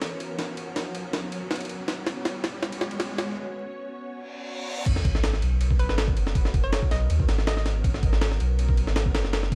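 A dark, frenetic drum and bass cut in G# minor at 161 BPM opens on a build-up, with a sampler-style breakbeat kit running a drum fill under an electronic riser while a silky, vintage string machine holds a G#m11 chord, its ensemble chorus and 12-bit grit sitting beneath a round, deep dub sub bass. After a short break and a reverse cymbal, the drop lands at 4.9 seconds with an impact, the compressed, pitched-up kit up front with its thumpy kick, high-tuned snare and tape-warm small-room ambience. At 5.8 seconds a hollow, bouncy square pluck adds a brief melody through chorus and dub echo, all within a dark, dry production flecked with vinyl crackle.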